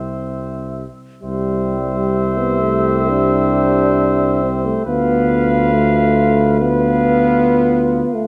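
A moderate concert-hall reverb surrounds this short cut from a longer classical, hymn-like brass band piece, lyrical and warm at a rubato 61-70 BPM in C major: a mellow, distant cornet carries the melody with light vibrato and a soft attack over a clear flugelhorn second line, a dark, tight trombone section in the background, a euphonium with light vibrato in the accompaniment and an up-front tuba bass with a smooth top, the harmony shifting from C to Bdim/D at 4.8 seconds.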